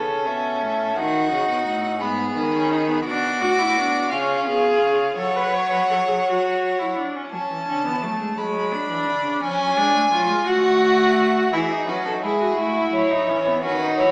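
A string quartet opens together in a joyful, lively baroque-style fugue, moving in a straight 6/8 at 57 BPM counted in dotted quarters and settling into F# minor from 3.1 s. The first violin carries the melody, spanning F#4 to D6 with a rich, focused tone, vibrato and a smooth top. A second violin adds a soft-attacked second line with expressive portamento, drops out at 6.9 s and returns at 11.5 s. Beneath them, a clear, focused viola holds the accompaniment, while a distant cello anchors the bass with gentle attacks and sliding, vibrato-laden phrases. The quartet sounds heard from further back in a reverberant stone room, with a small-speaker character, in a passage cut from a longer piece.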